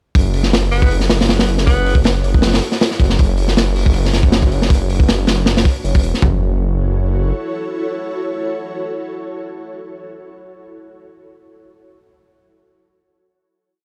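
The recording is dry and gritty, with a hardware crunch and transformer saturation colouring the mix. It is a frenetic yet nostalgic piece of drum and bass in the jungle mould, running at 158 BPM in F# minor with a lightly swung sixteenth-note feel. Up front, a heavily chopped acoustic breakbeat of tight kick, medium-tuned snare, toms and hi-hat sounds saturated with a rolled-off top. A thick, beating, menacing detuned saw bass carries a dub-style line beneath it. Near the start a bright tenor saxophone plays short, punchy jazz-style phrases with vibrato, roughened by vintage 12-bit sampler grit and trailed by dub echo. Above it all, an ethereal, airy pad with ensemble chorus, reverb and tremolo holds rootless chords with syncopated pushes, moving from F#m7 to Bmadd9/F# and back; the drums stop at 6.3 seconds, the bass at 7.3 seconds, and the pad sustains the final chord alone until 10.0 seconds.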